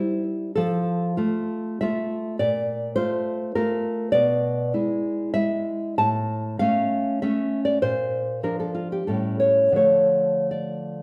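A solo nylon-string guitar carries this romantic classical piece, its thumb-plucked tone sitting up front and sounding warm. The mood is passionate and melancholic, unfolding in a flexible three-beat metre with rubato that lets phrases stretch and settle. The harmony moves from C through F and a Bbmaj7 to a tense E7/B, then turns to A and Bb before an A7 resolves onto D minor near 9.8 seconds. The guitar ranges from a deep A2 up to a bright A5 across its 11 seconds. A moderate recital hall reverb gives the instrument a natural sense of space, as if heard in a church or concert hall, and the passage is cut from a longer piece.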